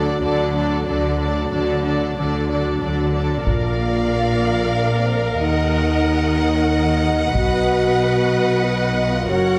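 Triumphant and heroic, this cinematic orchestral cue in 3/4 is cut from a longer piece and opens with a build-up of bowed strings: a vibrato-rich second violin line, close, lush violas, expressive cellos and a smooth, even double bass section. At 3.4 seconds mellow French horns take up soft-attacked sustained chords, joined by an expressive violin melody with a smooth top and close, heavy-stick taiko drums that stop at 8.6 seconds. The ensemble sits in a moderate scoring-stage reverb.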